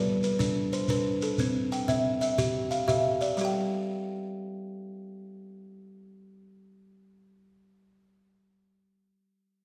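A buzzing, woody kalimba rings up front with hypnotic, rippling arpeggios from G3 to G5 in a southern African traditional mbira-style interlocking cycle at 121 BPM in 12/8, moving from G to C in G mixolydian, while a grainy shekere joins at 0.2 s and falls silent at 3.5 s, the pair set in the wet reverb of a recital hall in this short fragment of a longer piece.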